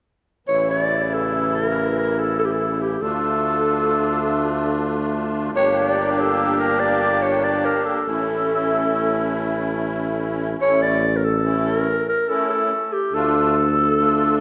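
Set in the lush, reverberant space of a church or concert hall, this short cut from a longer klezmer piece moves at 71 BPM in a straight 3/4, bittersweet yet festive, in A phrygian dominant over chords of A, Dm and Gm. Up front, a raspy, growling clarinet carries the melody in a jazz style with vibrato and scooped notes, while a reedy musette accordion with shimmering musette tuning supplies the accompaniment. A mellow tuba in classical style holds the bass, and all three play together from 0.5 to 14.4 seconds.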